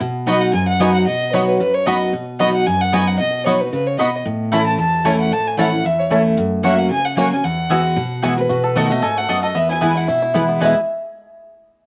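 Driving and lively, this short bluegrass excerpt swings along at a brisk clip, with a bright, full-bodied picked dreadnought guitar up front laying down the accompaniment from the very start. A dark, woody fiddle with light vibrato and a smooth top carries the melody alongside a twangy, percussive fingerpicked banjo, while a double-strung mandolin adds picked stabs, all joining at 0.3 seconds. The sound sits in a moderate studio room and carries the worn character of old cassette tape, its pitch drifting with a warbly waver.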